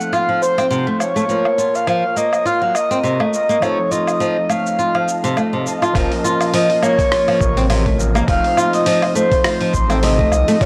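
Hypnotic and mystical, this organic downtempo cut from a longer piece sways with a light 16th-note swing, as a breathy, flute-like synth lead carries the melody up front through tremolo, chorus and tape echo over an overdriven, gritty tine electric piano that pumps against the beat, a very quiet ethereal pad and fingerpicked flamenco guitar arpeggios with audible finger squeak. A dusty, sampler-style kit of hi-hat, rim click, shaker and woodblock ticks along from the start, and at 6.0 seconds a round sine sub bass and a thumpy electronic kick join as the chords shift. The sound is dry and hardware-saturated with only light reverb.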